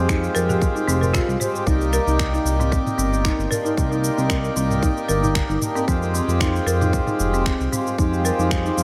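Mystical organic downtempo in C minor at 114 BPM with a gentle 16th-note swing, this short excerpt moves from Fmadd9 to Cm7 and back as a reedy, breathing pedal harmonium with sidechain pumping and delay sits up front beside a woody, rustic folk marimba playing delayed arpeggios, a smooth, dark synth bass pumps underneath, a blurred, detuned granular cloud pad hovers very quietly above, and an overdriven, tight electronic kick and an organic electronic kit of cabasa, finger snaps and toms, both re-recorded in a large room, drive it all under light reverb.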